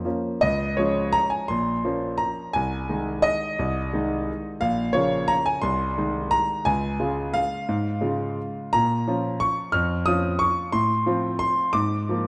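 A rubato waltz in 3/4, moving between 150 and 189 BPM, this short excerpt from a longer classical piece is a nostalgic, wistful piano solo that begins in Db major and turns to Bb minor at 8.7 s. The concert grand plays alone throughout, spanning Bb1 to F6 with a clear, natural tone and deep bass, and sits up front in the mix. A moderate concert hall reverb surrounds it, and the overall production leans dark.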